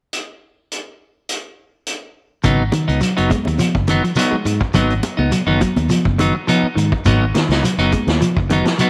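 Intense and driving, this afrobeat excerpt at 104 BPM in G# dorian opens with a punchy, rolled-off vintage drum kit playing hi-hat, kick and snare alone until 2.4 s, when a round fingered electric bass, a dark, slightly broken-up guitar playing arpeggios with subtle chorus, a bright, twangy, up-front guitar playing stabs, and a grainy shekere join over a G#m7 chord, with ringing, high-tuned congas entering in the background at 2.7 s, all set in light reverb.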